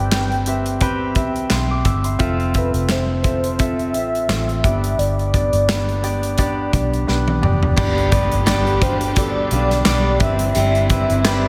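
A lush hall reverb gives this short cut from a longer piece a big, arena-sized sound, with the piano and drums sitting up front. It is anthemic, hopeful piano-driven pop at 86 BPM in 4/4, with a light swing on the sixteenths, moving through Cmaj7/G, Fmaj7 and G before returning to Cmaj7/G. A warm concert grand carries the accompaniment with deep bass, long sustain and audible action noise, while a velvety, detuned sawtooth synth lead sings the melody with chorus, vibrato and a slapback echo. A dark, round, foam-muted electric bass and a tight, small-room acoustic kit, with handclaps, toms and crash cymbal, hold the groove, and a drum fill at 7.1 seconds leads into a new passage. At 7.8 seconds a very quiet electronic impact hits, a bright, fresh-stringed dreadnought guitar adds a picked riff in the background, and a faint, expressive bowed string ensemble with portamento fills in sustained chords.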